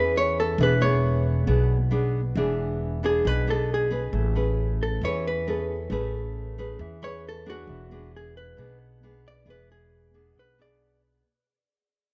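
Bossa nova with a relaxed, sophisticated mood, this brief cut from a longer piece drifts between Amaj9 and E7 while a clean, compressed vintage hollow-body jazz guitar takes a picked solo in its upper-middle range. Beneath it, a fingerpicked nylon-string guitar adds classical-flavoured accompaniment, and a woody, thumpy pizzicato upright bass anchors the low end, all three sitting up front. Light reverb gives the mix a gentle sense of space, and the whole passage fades out across its 11.2 seconds.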